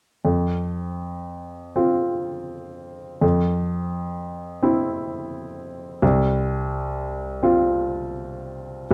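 This is a romantic classical nocturne for solo piano, serene and tender, moving at a slow 39-44 BPM in dotted quarters in 6/8 with a rubato feel. An upright piano carries the whole passage, heard from 0.2 to 8.9 s, ranging from C2 up to F4. Its tone is woody, smooth and vintage, with a short sustain, and it sits up front in the mix. The harmony rests on F5, moves to C/F at 3.2 s, and settles on F5/C at 6.0 s. A moderate large-studio reverb and a dark, warm production frame this brief passage, which is cut from a longer piece.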